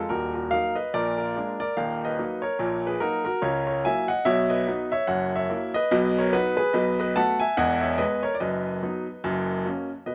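A lightly swung 4/4 pulse at 144 BPM drives this playful, swinging stride piano passage, cut from a longer piece. A solo concert grand carries the whole 10.1 seconds, reaching from a deep bass D#1 up to A5, with a brilliant top, long sustain and audible action noise that makes the sound feel intimate and up front. The harmony opens in D# minor, moving through A#7, before settling into B major from 3.4 s. From there it runs through F#7, B and E, turning on B/F# and closing on F#. A slapback echo clings to the piano, while the surrounding sound is dry and open-air, with little reverb.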